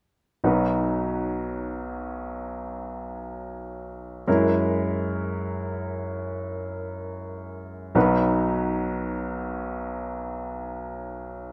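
A bright baby grand piano plays alone from 0.4 to 11.5 seconds in this hopeful, lyrical romantic character piece cut from a longer work, its brilliant, open tone ringing with long sustain up front in a close, detailed recording with light reverb as the harmony moves from B through F#9 at 4.3 seconds and back to B at 8.0 seconds.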